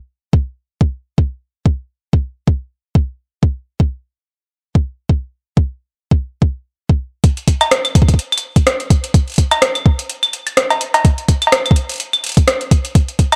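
A soft, tape-warm electronic kick drum opens this cerebral, glitchy IDM fragment, sitting up front in a dry space with a light swing on the sixteenths. At 7.2 seconds a booming analog drum machine joins it, adding claves, cowbell, rim click and metallic hi-hats, re-recorded in a large room and softened by low-pass filtering on the hats, percussion, snare and room sound. Both parts carry on together until the cut at about 13.4 seconds.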